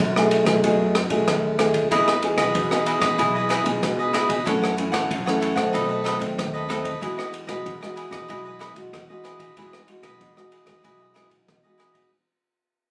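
An up-front, thumb-plucked nylon-string guitar with a classical tone carries the accompaniment in this lively, festive samba and choro fragment in E major at 94 BPM, joined at 1.9 seconds by a bright, crisp, picked cavaquinho. Underneath, a woody pizzicato upright bass with steel strings and an open jazz kit with a boomy kick, dark ride cymbal and rim clicks support chords moving from B6 through Emaj7, F#m7 and B7b9 to Emaj9. Captured on a phone in a studio room with moderate reverb, the whole clip plays under a fade-out.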